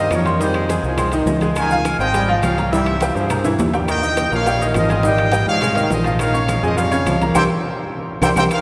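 Awash in a cavernous cathedral reverb, this danceable, passionate salsa fragment puts a bright, lightly vibratoed trumpet section up front over a worn, slightly detuned upright piano with audible action noise, a round, punchy fingered electric bass and a mellow, distant trombone section, while damped congas, tight high-tuned bongos, ringing metal-shell timbales, woody claves and grainy maracas sit quietly underneath, with drum fills at 3.4 and 7.4 seconds, the second one joined by a full band accent.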